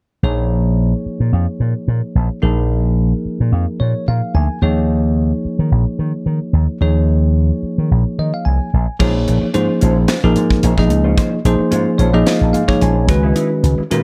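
A bell-like tine electric piano with plate reverb and a punchy, up-front slap bass run through an envelope filter open this driving, slick excerpt of electric jazz fusion, riding swung sixteenths over minor-seventh and suspended harmony, with the piano adding short fills along the way. At 9.0 seconds a crisp studio drum kit arrives with bright cymbals, a high-tuned snare and an airy, polished sound, while a mellow, fingered electric guitar, wrapped in lush chorus and plate reverb, adds quiet stabs from the background. The whole production has a dark cast.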